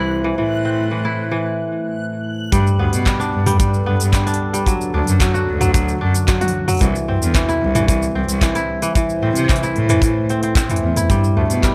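A folktronica excerpt opens on a warm, nostalgic pad of detuned sawtooth and triangle tones, warbling and lo-fi with chorus, phaser and reverb, holding sustained chords in the background. Over it a fingerpicked kora rings out up front in crisp arpeggios with tape echo, while a single bowed cello carries the bass line with a biting, intense vibrato. A dreamy reversed texture, granular and softly swelling, lingers high above at the very start before a short break at 1.5 seconds. At 2.5 seconds the beat arrives: a punchy acoustic kick with a big-room sound, entering together with an overdriven electronic kit of cabasa, handclaps, crisp hi-hats and toms, low-pass filtered and re-recorded in a large room. The chords move from Am through Gadd9, D, C and Am in a steady 4/4, and the overall mix stays dry, giving the piece a playful, hopeful lift.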